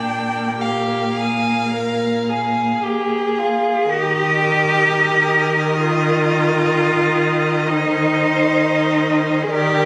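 Captured on a phone in a recital hall with moderate reverb, this short cut from a longer piece carries a murmur of club ambience and a compressed sound. It is a slow, romantic classical movement for string quartet in Eb major, in 4/4 at 51-69 BPM, played with rubato and a serene, tender mood. The first violin sings the warm melody from close by, with expressive vibrato and portamento, while the second violin adds a clear, focused second line from a more distant position. The viola gives a rich, expressive accompaniment with vibrato and portamento, and sits up front alongside the cello, whose bowed bass line is likewise focused and full of vibrato. The harmony moves from a Bb5 chord to Eb as a new passage begins at 3.9 seconds, then settles on Cm/Eb at 7.7 seconds.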